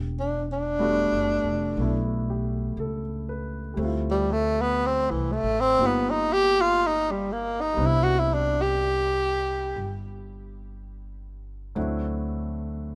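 Light reverb gives this short cut from a longer jazz ballad a romantic, tender air at 60 BPM in 4/4 with a gentle swing. A breathy, mellow tenor saxophone sits up front with the solo melody from 0.2 to 10.1 seconds, using subtone, light vibrato and scooped notes. A natural-sounding baby grand piano accompanies, and a woody pizzicato upright bass, also up front, anchors the low end as the harmony moves from Em11 through Dm11 and G7alt to Cmaj9, closing on D9.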